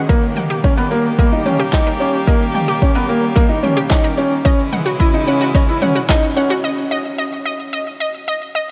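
A huge ambient reverb wraps this short cut from a longer piano and strings electronica piece, giving it a cinematic, hypnotic atmosphere at 110 BPM in a straight 4/4. A dark, veiled string quartet, bowed con sordino with light vibrato, holds sustained chords that pump against the sidechain, while a bright, detuned analog pluck with chorus and delay spins arpeggios over them. Up front, a soft, felt-muted upright piano plays an intimate, mellow riff with a trail of delay, as the harmony moves from D# to C#m at 4.5 seconds. A deep, overdriven electronic kick sits forward in the mix, joined by an organic electronic kit of handclaps, shaker and toms that was re-recorded in a large room, and a round, wave-folded analog bass that is barely audible beneath. The whole passage is a build-up, and at 6.6 seconds the other parts drop away and the pluck's arpeggios carry the break alone to the end.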